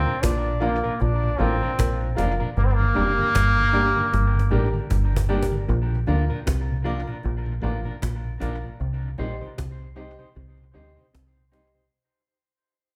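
A bright, roomy trombone opens this uplifting roots reggae excerpt up front with scooped notes, over a round, punchy dub bass and a worn, woody upright piano playing stabs with audible action noise. A clean, fingered electric guitar and a snappy, hard-handed cajon, both carrying dub echo, join a flute-like tonewheel organ with key click and a stringy muted clav through a phaser, the last two sitting in the background as the band plays live in one large studio room. The trombone stops at 5.3 seconds during a drum fill, and the groove then fades out, with a break arriving at 10.4 seconds.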